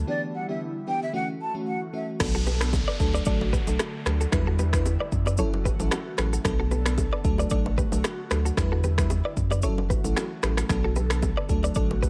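A sultry, hypnotic afrobeats groove in B minor at 113 BPM opens on a filtered break, with a round, mellow sub bass, a lush chorused FM electric piano and a faint, airy pad with phaser and sidechain pumping under a breathy, hollow jazz flute that sings up front with vibrato and delay until 2.1 seconds. At 2.2 seconds a tape-warm deep house kit arrives with deep kick, rim click, finger snaps, shaker and crash, joined by very quiet, close and dry congas and bongos, an electronic downlifter and a twangy, clean picked electric guitar riff with delay. The chords cycle through Em7, F#m7, Bm7 and D in a digital ambience, and the passage is cut from a longer piece.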